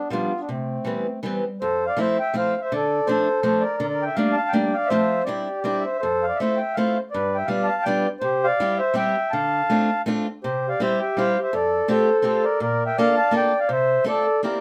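A musette waltz in F major at 164 BPM in 3/4, this short excerpt has a whirling, charming mood. A mellow accordion carries the melody from start to finish, its reedy, round tone close-miked, dry and up front. A dark clarinet plays a second line with a soft attack and classical style, sitting in the background; it sounds for the opening 1.6 seconds, drops out, and returns at 10.4 seconds. A picked old ladder-braced acoustic guitar supplies the accompaniment, boxy and up front, with audible finger squeak. The harmony moves through colourful chords such as Fmaj7, Dm7, Gmadd9/D, G7 and Bbmaj7 before settling on F/C, all set in a wet studio ambience.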